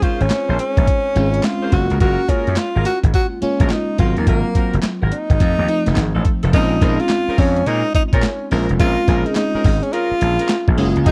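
A dry, close recording with a 1970s studio character carries this confident, slick new jack swing fragment, where a dusty, sampler-style drum kit with a thumpy kick, crash and handclaps sits up front beside a gritty, overdriven slap bass that enters at 0.2 s. A breathy, whispered tenor saxophone with scooped notes and slapback echo carries the melody over a lush, dreamy FM electric piano with a soft pad layer and chorus, while a mellow horn section adds tight stabs. A rich bowed string section arrives at 11.1 s, just as the fragment ends.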